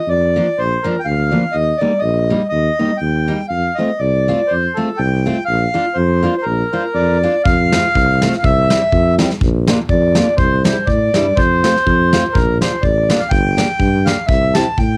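Reedy, airy accordion carries the melody from the start of this festive, bouncy alpine dance band excerpt at 123 BPM in a swung, rubato 2/4, joined by a dark, smooth-topped tuba bass with light vibrato and a full-bodied picked jumbo steel-string guitar with finger squeak, moving from Bb major to F major at 7.5 s where a soft brush kit with a tight kick and medium-tuned snare comes in, all heard in a moderate booth ambience with the cassette grain of a home recording.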